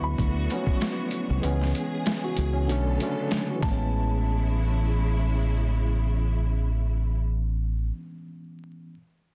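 Confident and nostalgic, this boom-bap hip-hop excerpt at 96 BPM in A major sets a gritty, overdriven sampler-style drum kit with a thumpy kick (muted from 1.4 to 3.9 seconds) and high-tuned snare up front beside a round, dark fingered electric bass, while a worn, slightly out-of-tune tine electric piano on cassette tape carries the accompaniment, distant bowed strings hold sustained chords, and a woody, slightly detuned upright piano with audible action noise plays a delayed melody in the background over D6, C#m7, Bm7 and Amaj7, all beneath vinyl crackle and a dense, heavily limited master.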